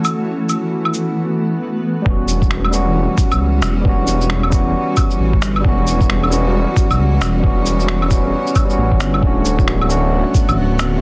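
Rainy and ghostly, this future garage excerpt moves at 134 BPM in 4/4 with a swung sixteenth-note feel in E dorian, cut from a longer piece. From the start, a gritty, barky electric piano played through a combo amp carries the accompaniment with tape echo and sidechain pumping, while a cloudy, blurred granular pad holds sustained chords beneath it. A sampler-style kit of cabasa, claves, shaker and finger snaps sounds pitched down, muffled and overdriven in a small room, and a glassy texture of drifting overtones sits in the background with chorus, ending at 1.2 seconds. At 2.1 seconds the harmony shifts from F#m7 to Em69 as a menacing, detuned saw bass arrives up front with a filter swell and sidechain pumping, joined by a thumpy, tape-warm kick re-recorded in a small room. The chord moves to Bm7/D at 9.2 seconds, and the dense, heavily limited master keeps the whole mix close and pressing under light reverb.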